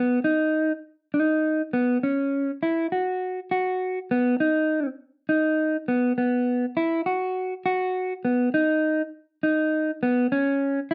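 A small room with a moderate, short reverb surrounds a clean electric guitar placed up front in the mix. This brief cut from a longer progressive instrumental piece is carried by the single guitar, which plays solo from the first moment to the end at 10.9 seconds. Its tone is mellow and dark, with a fingered touch. The part stays in a compact middle register while the music moves in an odd 7/8 metre with a straight feel. Despite the guitar's shaded colour, the mood comes across as bright and driving.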